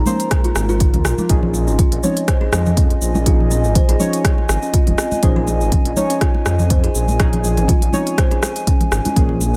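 Driving and spiritual, this afro house excerpt at 122 BPM in Bb minor rides a lightly swung sixteenth feel over a single Bbm7 chord, with an up-front deep electronic kick, crisp hi-hats, rim clicks and shaker from a tape-toned afro-pop kit, damped, high-tuned congas in the background, a rumbling, beating detuned saw bass, a moody slow-attack analog pad with lush chorus, warbling vintage chord stabs with chorus and digital delay, and woody, airy kalimba arpeggios echoed by delay, while the pad, stabs, bass and kalimba pump against the sidechain inside a digital ambience.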